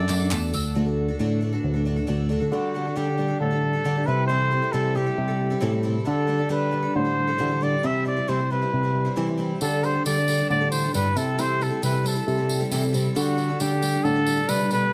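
Nostalgic and anthemic, this indie folk passage, cut from a longer piece, moves in a straight 4/4 with an arrangement that builds. A mellow, vintage trumpet carries the melody up front in a classical style, while a barky tine electric piano, lightly overdriven through a combo amp and colored by a phaser, supplies the bass just as prominently. A picked twelve-string acoustic guitar adds shimmering, octave-doubled accompaniment with audible finger squeak, and a bright mandolin plays background arpeggios only briefly at the opening before an old ladder-braced acoustic guitar, dark, woody and boxy on old strings, joins with fingerpicked accompaniment at 0.8 seconds. A jingly, compressed tambourine taps in at the very start and returns at 9.6 seconds. The harmony centers on D and alternates Dsus4 with C and C6 chords, and the whole is set in a small room with light reverb.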